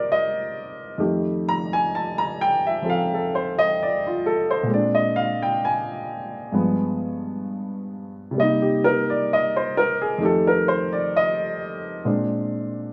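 Sophisticated and playful, this short solo jazz passage, cut from a longer piece, moves at an unhurried 65 BPM in 4/4 with a relaxed swing on the eighth notes. A baby grand piano carries everything alone from 0.0 to 12.9 seconds, ranging from F2 up to Bb5 with a warm, natural tone that sits up front. The harmony circles through Cm7 and F9 toward Bb9, with a G7b9 at 6.5 seconds adding a touch of bite before the progression returns to Cm7 and F9 and lands on Bb9 at 12.1 seconds. A wet studio reverb with a short decay surrounds the sound, and the room is heard from further back, giving the playing a gentle sense of space. The tuning sits slightly above standard pitch at A4 = 443 Hz.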